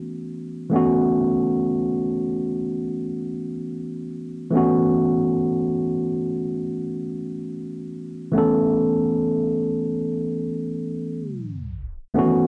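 R&B in free time, this romantic, dreamy fragment of a longer piece features a lone tine electric piano, worn, mellow and slightly out of tune, played clean through a combo amp and sitting up front as it lingers on a B9sus4 chord between D#3 and A4. A wet small-room reverb and the character of a home cassette recording surround it, and a tape stop drags the sound to a halt between 11.2 and 12.2 seconds.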